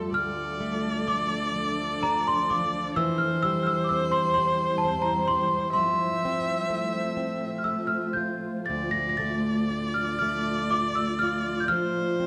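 A worn celesta leads this mournful, longing Celtic slow air, its bell-like, slightly out-of-tune voice carrying the melody high above the rest in a free, rubato 3/4 at around 56-66 BPM. Beneath it, a clear viola played by one bowed player sings a close, even second line with vibrato. A plugged-in acoustic guitar, fingerpicked in a swing style, sits up front with a boxy tone, supplying the accompaniment from low in its range. A granular cloud pad holds blurred, evolving chords underneath, mellow and detuned, with its own built-in reverb. The harmony moves from Dm through C/E and F and back to Dm before settling on F near 11.7 seconds, the whole passage bathed in a wet recital-hall reverb and cut from a longer piece.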